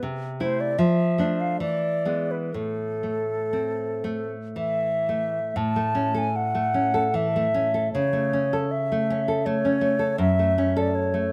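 In a freely breathing rubato triple metre, this yearning, elegiac romantic duo sets an airy, vibrato-rich silver concert flute melody, entering at 0.4 s, over deep, fingerpicked nylon-string guitar accompaniment placed up front, both touched with slapback echo in a dry open-air sound, as the brief fragment turns from minor to major at 5.6 s.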